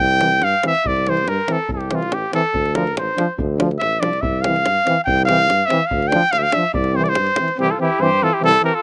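Festive and virtuosic, this brief Balkan brass band fragment in C mixolydian at 142 BPM pushes steadily faster as a trumpet with light vibrato and slapback echo solos up front over a distant, roomy tuba bass, a deep, dry davul, a clear, soft-attacked trombone and a background euphonium, all heard outdoors in a dry sound, until a second trumpet takes the melody at 7.6 seconds.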